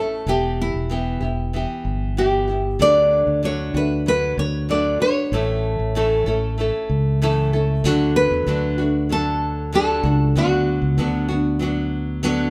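Two fingerpicked nylon-string guitars begin the excerpt together at 0.0 seconds: a bright, classical-toned lead carries the melody while a deeper, full-bodied second guitar, with audible finger squeak, plays accompaniment beneath it. A punchy, direct fingered electric bass joins at 0.3 seconds, and all three sit up front in a wet stone room, played live as a band. This reflective, wistful acoustic pop excerpt moves at a straight 95 BPM in 4/4 over Em, D and A, then shifts to a new section at 7.8 seconds built on D and Bm.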